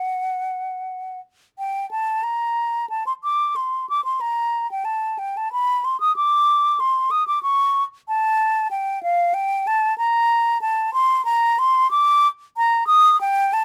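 A mellow, hollow silver concert flute plays alone and up front, its pure metal tone shaded with vibrato and tongued notes ranging from F5 to Eb6. This baroque-style classical fantasia in G minor moves with an introspective, flowing mood at 93 BPM in 3/4, with a rubato feel, as a brief opening phrase gives way at 1.6 seconds to a longer passage that runs to 13.6 seconds. Close, detailed microphones and little reverb capture this short section cut from a longer piece.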